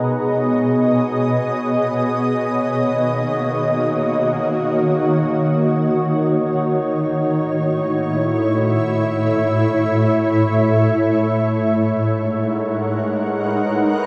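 Spacious and reflective, this brief ambient passage, cut from a longer piece, drifts in free time in G# minor, tuned slightly low with A4 at 439 Hz. A single shimmering ambient pad carries everything alone from 0.0 to 14.1 seconds, spanning A2 to F#5 and sitting up front in the mix. Its sound is ethereal and dark, built from detuned sine voices in unison with an octave-up shimmer and a granular texture, shaped by a slow attack, sustained body and long release. Chorus, built-in reverb and a diffuse ambient delay blur its edges, and the whole is set in a vast, echoing cathedral-like space with a 6.0-second reverb tail. The harmony moves slowly from B6 through D#m7 and A before settling on G#m7 at 11.5 seconds, where a brief second section begins.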